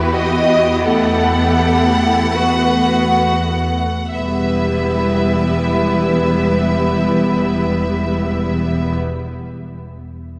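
An up-front, richly vibrant violin section carries an elegiac, yearning melody, while a more distant violin line sings beneath it in this slow romantic movement for string orchestra in E minor, moving in a rubato 3/4 at around 31-47 BPM and slowing through its first 4.1 seconds. Smooth, even violas give warm accompaniment, a focused cello section sits in the background, and clear bowed double basses anchor the low end, all with vibrato. A long church reverb lends the fragment a lush, resonant air as the harmony settles from B5/E onto E minor at 4.1 seconds.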